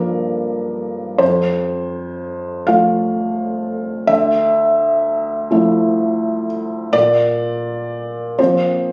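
Unhurried and rubato in 6/8, the music drifts at roughly 39-44 BPM counted in dotted quarters, and its pulse bends freely. This short neoclassical minimalist piano passage in F major, tuned to A4 = 444 Hz, is cut from a longer piece and carries a peaceful, tender mood. A felt-muted upright piano plays alone throughout, reaching from D2 up to F5, its tone soft, mellow and intimate, sitting close up front with a touch of slapback echo. The harmony moves from Gm7 to F at 1.2 seconds, then to Dmadd9 at 4.1 seconds and settles on Bbsus2 at 6.9 seconds. Captured on a phone in the room and then given moderate studio reverb and compression, the sound keeps a natural, warm character.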